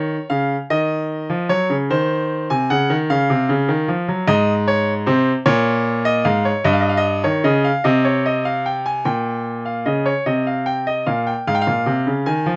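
Serious and driving, this baroque-style two-part invention for solo grand piano moves in a straight 6/8 and is cut from a longer piece. The bright concert grand sounds brilliant and open, with deep bass and an up-front presence captured by close, detailed microphones in light reverb. Its harmonies pass through Db, Ebm7 and Ab7/Eb before the second section arrives at 9.1 seconds and moves through Gdim/Bb, Cm and Fm/Ab.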